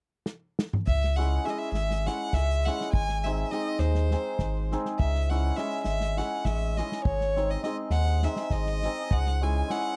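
An acoustic drum kit played with bundle sticks opens with a brief fill at 0.3 s, its tight kick, medium-tuned snare and toms sounding as if in a small room, before this restless Balkan wedding-band folk piece settles into a straight 7/8 groove cut from a longer performance. At 0.9 s a single bowed violin takes the melody up front, clear and smooth with even vibrato and a slapback echo, while a round, deep analog bass with a fast attack and a filter sweep sits prominently beneath, and a hammered dulcimer joins at 1.2 s with mellow, shimmering, ringing accompaniment. The virtuosic playing moves between C#m and G# in a dry, close 1970s-style studio sound.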